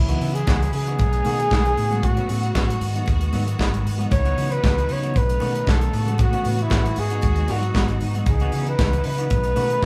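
A straight, driving disco groove from an up-front acoustic drum kit with a punchy kick, medium-tuned snare, hi-hat and handclaps, a dark, round fingered electric bass and very quiet, damped high-tuned congas carries this danceable fragment, where a close-miked flugelhorn sings a jazz-style solo melody with vibrato over lush, bright bowed strings holding sustained chords, while a clean, twangy electric guitar with harmonic tremolo sits in the background, all within a wet, live-room ambience.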